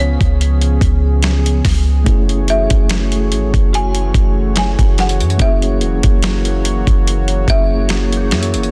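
A gritty, sampler-style drum kit with a thumpy kick enters at 0.2 seconds over a deep, boomy 808-style sine bass, setting a slow 72 BPM groove in 4/4 with a light swing on the sixteenths in this moody, sensual contemporary R&B piece. A woody folk marimba struck with hard mallets carries the melody through delay, backed by a mellow tine electric piano and a detuned sawtooth analog pad with chorus and sidechain pumping, moving through C#7, F#m9 and F#7. From 3.7 seconds an inharmonic FM synth chime rings in the background through ensemble chorus, phaser and delay, set in a digital ambience with a dense, heavily limited modern master.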